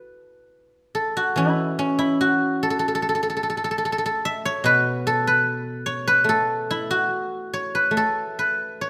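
This is Chinese traditional music for solo plucked strings, an elegant, pastoral fragment cut from a longer piece. A lone guzheng plays throughout the 8.9 seconds, moving with a free, rubato feel over a loose 4/4 pulse. Played with fingerpicks, the instrument has a silvery, ringing tone, ranging from B2 in the low register up to E5. It sits up front in the sound. A moderate concert hall reverb surrounds the strings and lets each plucked note ring out into the space.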